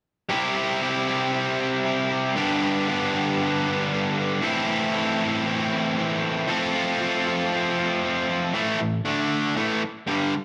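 Swaggering and gritty, this short rock excerpt moves at 117 BPM in a straight 4/4, centred on A minor. Two distorted electric guitars carry the riff together from 0.3 to 10.3 seconds, both picked and sitting up front in the mix. One has a scooped, compressed bite with distortion, while the other leans on a bright overdrive that reaches up to A4. The riff first cycles through C, G, Am and F before shifting at 8.5 seconds to A5, D5 and A5 power chords. A wet, large-studio reverb with a 1.2-second tail wraps the guitars in a digital ambience, giving the cut a roomy, gritty edge.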